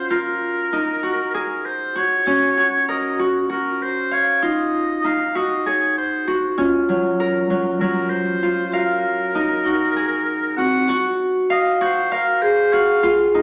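Contemporary instrumental chamber music in 7/8 at 195 BPM (eighths), hopeful yet restless, set in Gb lydian and cut from a longer piece. Up front, a mellow, fingerpicked Celtic harp plays ringing acoustic arpeggios, while a solo oboe with light vibrato sings the melody in classical style, its tone distant and roomy. At 2.3 s a dark, smooth vibraphone with medium hard mallets and motor off enters with a metallic second line, as the harmony moves between Absus2 and Gbmaj7 and shifts to an altered Gbmaj7 at 10.9 s, within a wet recital hall reverb.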